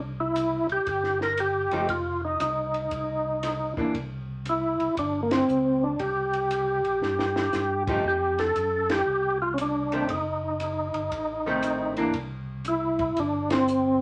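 Greasy and swinging, this soul jazz organ trio excerpt moves at 117 BPM in 4/4 with a swung eighth-note feel, as a fat, clean tonewheel organ bass with key click and slow rotary speaker anchors the low end, a lightly overdriven percussive tonewheel organ carries an up-front melody through slow rotary and chorus vibrato, a dark compact cocktail drum kit with a high-tuned snare, punchy kick and rolled-off top adds a fill at 7.0 seconds, and a hollow-body archtop guitar comps in clean, picked bursts over chords moving from C through F5, Fadd9 and F#dim7, all set in a short, wet studio reverb with band accents at 5.2, 8.8 and 13.4 seconds.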